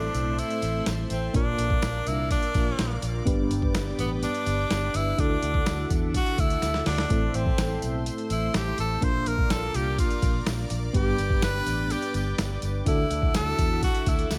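Urgent and dramatic, this 1980s-style pop passage, cut from a longer piece, moves at 125 BPM in a straight 4/4, with an edgy tenor saxophone soloing up front with light vibrato over a chord cycle of Am, Bb, G and Dadd9, its tape echo trailing each phrase. Beneath it, a mellow FM electric piano with chorus and tremolo, a round, foam-muted fingered electric bass and a bright, detuned resonant pad filling the high register carry the harmony, while a gritty, pitched-down sampler-style drum kit with a thumpy kick drives the groove and breaks into a fill at 6.6 seconds. A jingly tambourine sits dry in the background, and light digital ambience wraps the sound.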